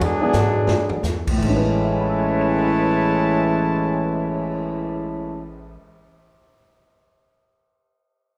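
This brassy, swinging big band jazz fragment opens with a mellow, up-front trumpet section carrying the melody over a bright trombone section's second line, a growly pizzicato upright bass, and a distant, roomy drum kit that plays a fill from 0.3 to 1.0 seconds as the time slows. A woody upright piano sits in the background and rings on after the other parts stop, while the harmony moves from E9 to Amaj9 at 1.4 seconds. The ensemble sits in a wet concert-hall reverb.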